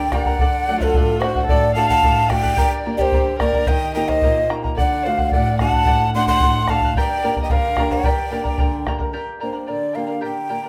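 Festive yet wistful, this Andean folk passage, cut from a longer piece, moves in a straight two-beat metre over chords of D, G minor and E-flat. A cane quena carries the melody up front, its breathy, hollow tone shaded with vibrato, a crisp attack with audible chiff, and lifted highs. Beneath it, a single dark violin plays a second line with light vibrato, soft attack and an airy sul tasto bow, sounding intimate and somewhat boxy before it stops at 8.9 seconds. Fingerpicked charango adds a shimmering layer from its double strings, some doubled at the octave, while a small nylon-string guitar fills out the lower register. A round, close bombo sits prominently in the mix until 9.1 seconds, when a brief new section begins, and the ensemble plays live together in a large studio room with moderate reverb.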